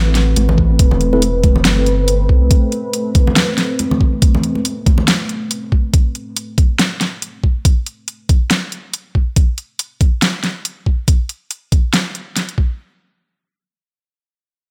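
A cavernous, heavy deep dubstep excerpt opens on a moody, detuned sawtooth pad holding an Amadd9 chord under a filter sweep, bathed in chorus and built-in reverb, as a thick, saturated sine sub bass sounds up front until 2.5 seconds and a barely audible electronic impact marks the start. The swung half-time groove rests on overdriven, up-front drums: a knocking electronic kick and a kit with hi-hat and a huge snare, joined for a stretch by hard-hand congas in a live room, treated with dub echo. At 1.1 seconds a mellow, clean tine electric piano stab flickers in the background through a low-pass filter and dub echo, and the pad sustains until 9.3 seconds while the drums carry on under light reverb.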